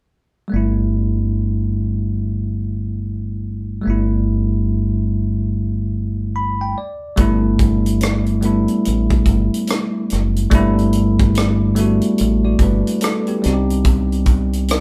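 R&B and neo-soul at a sensual, smooth 72 BPM in G major with a swung 16th-note feel: a bright, bell-like tine electric piano and a dark, round, punchy fingered electric bass play up front in a moderate room reverb, the piano adds a fill from 5.9 s, and a tight, natural acoustic funk kit of hi-hat, kick and rim click joins at 7.2 s as the harmony moves from G6/9 to Cmadd9 near the end of this excerpt from a longer piece.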